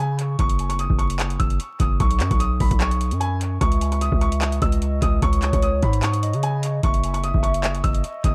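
The rhythm sits in a half-time trap feel at 149 BPM in 4/4, driven by a booming analog drum machine that enters at 0.2 seconds with a deep kick, metallic hi-hats and handclaps, its tape-warm tone placed up front. Beneath it, a distorted 808-style bass growls from the very start, heavy and saturated with a noise layer, a fast attack and a decaying tail that give this short cut of hip hop a menacing weight. High above, a felt-muted upright piano carries the melody in a soft, intimate register with short sustain, its notes trailing into dub echo. From 3.6 seconds, a hollow, woody clarinet-like synth lead adds a mellow second line, coloured by chorus, phaser, vibrato and dub echo. The harmony in C# minor moves from F#5 through Bsus2 to C#madd9 and back, all set in an echo-heavy digital ambience with vinyl crackle that deepens the brooding mood.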